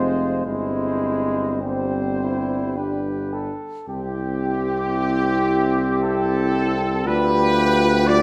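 An up-front trumpet section carries a soft-attacked, lightly vibrato melody through this serene, hymn-like classical brass band passage in 3/4 with a rubato feel, over a vintage-toned flugelhorn second line in the background, a mellow euphonium and a bright, distant trombone in accompaniment, and a warm, up-front tuba bass, the ensemble heard in a wet stone room.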